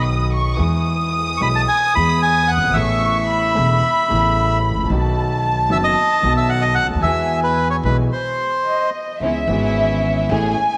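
Tango in E major at a rubato 111 BPM, elegant and passionate, where a reedy, up-front bandoneon carries the melody over a dark, intimate violin section's smooth second line, a mellow concert grand piano with audible action noise and deep bass, and a woody, growly pizzicato upright bass, all halting together at 8.1 s before an earthy, distant chamber string section adds tape-echoed stabs from 9.2 s, the whole bathed in plate reverb and vinyl crackle.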